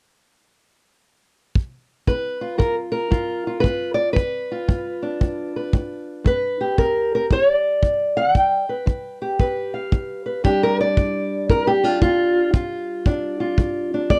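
A dark, boxy fingerpicked parlour steel-string acoustic guitar carries the melody in this laid-back, swaggering acoustic country blues, entering at 2.1 seconds over a G7 and taking a solo from 10.4 seconds as the harmony moves to G5. A punchy kick drum played with brushes comes in first at 1.6 seconds, both parts sitting up front in a 115 BPM swung 4/4 groove in G mixolydian. The sound is dry and close, like a 1970s studio recording, with the kick carrying a small-room character, and the clip is cut from a longer piece.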